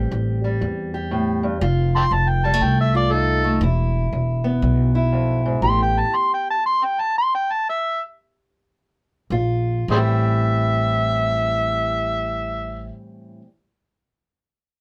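Acoustic country blues in A minor with a smoky, mournful mood, swinging in 4/4 at roughly 102 to 120 BPM, cut from a longer piece. A dark, boxy parlour-style steel-string acoustic guitar fingerpicks the accompaniment throughout, while a woody pizzicato upright bass sits up front beneath it, dropping out from 6.0 to 9.3 seconds before returning. An amplified, overdriven harmonica enters at 2.0 seconds and carries the melody as a jazz-inflected solo, gritty in tone with light vibrato, tongue slaps and scooped notes. Around 5.6 seconds the music slows and comes to a stop, then resumes, moving through chords such as Am7, F7 and Bb5 before settling back on Am7 as the second section begins. A moderate small-room reverb gives the parts an intimate, close-up setting.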